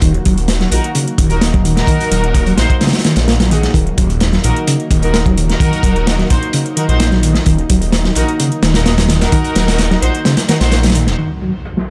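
A gritty, energetic breakbeat excerpt at 129 BPM in Eb minor, resting on an Ebm chord throughout. Up front, a crunchy acoustic breakbeat kit with a tight kick, medium-tuned snare and saturated, rolled-off top sits in a small room, joined in the background by a metallic, layered electronic hi-hat. A thick, swirling detuned saw bass with a phaser sits up front in the low end, while a reedy, worn electric piano plays a riff through fast tremolo, a low-pass filter and digital delay, sounding slightly out of tune. Behind them, a lush unison pad holds sustained chords with chorus and sidechain pumping, and a dark chamber string section adds bowed, expressive stabs with vibrato and delay from 0.7 s. An electronic impact lands at 11.2 s to close the passage.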